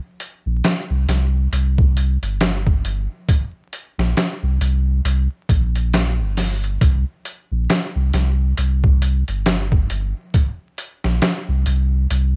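Trip hop with a smoky, melancholic mood, this short excerpt moves at an unhurried pace with a swung sixteenth-note feel. A sampler-style drum kit of kick, snare and hi-hat sits up front from 0.2 seconds, its compressed, pitched-down sound gritty and overdriven, with a thumpy kick, a medium-tuned snare and a touch of small-room ambience. A sine sub bass enters at 0.5 seconds, deep and round with a fast attack and sustained, mellow notes in a low register. The mix stays dry, with little reverb, while vinyl crackle runs through the recording. The whole passage forms a single section cut from a longer piece.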